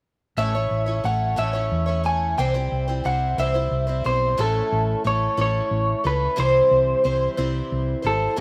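An electric guitar through a small old amp, dark, slightly broken-up and compressed, carries the melody with a slapback echo over a bright, shimmering picked twelve-string acoustic guitar, also echoed, and a round, hollow-body short-scale fingered electric bass in this nostalgic, warm folk rock and heartland rock excerpt in 6/8 at 60 BPM, moving between A and C chords with a dry, close, outdoor sound.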